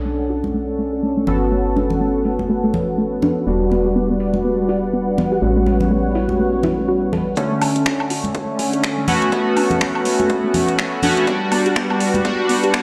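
Warm and hypnotic, this deep house cut from a longer piece moves at 123 BPM in B minor with a 16th-note swing, cycling through Bm7, Gmaj9#11, Em9 and A13. A glossy, retro chorused polysynth sits up front with pulse-wave stabs and tape echo, while a smooth, detuned analog pad holds sustained chords beneath it, its filter sweeping across both sections. A gentle, full-bodied pluck traces arpeggios in the background with chorus and echo, and a woody, dark FM bass anchors the low end, all of these pumping against the sidechain. The drum kit brings overdriven finger snaps, metallic hi-hats and woodblock, joined by bright, high-tuned congas played with hard hands. At 7.4 seconds an overdriven, punchy electronic kick enters in the background as the second section begins a build-up, the whole mix carried by plate reverb and the stony ring of a big sound system in a bare room.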